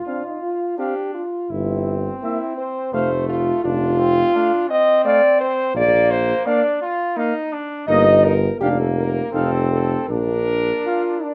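Noble and warm, this short classical brass quintet passage moves at an unhurried 84 BPM in 3/4 with a flexible, rubato feel, settling in Bb major. A warm trumpet carries the melody high in its range with light vibrato, sounding distant and roomy, while a mellow second trumpet with vibrato supports it from lower down. The French horn stands up front with a clear, vintage tone as the most prominent accompanying voice, joined by a clear, close-miked trombone. The tuba enters at 1.5 seconds, warm and up front with light vibrato, anchoring the low end until 10.7 seconds. The harmony passes through F and Bb with an F7 before resolving to Bb at 10.1 seconds, all set in a moderate large-studio reverb, and the piece is cut from a longer work.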